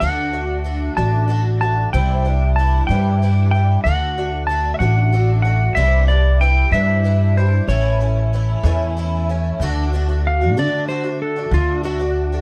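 A dark, lightly reverberant production frames this hopeful, open-road folk and heartland rock excerpt in 6/8. Woody pizzicato upright bass sits up front beneath a bright, boxy twelve-string acoustic guitar, whose octave-doubled picking shimmers through an ensemble chorus, while a clean, compressed lap steel carries the melody with slide and volume swells. At 9.6 seconds an electric slide guitar solo enters and runs to the cut at 12.4 seconds.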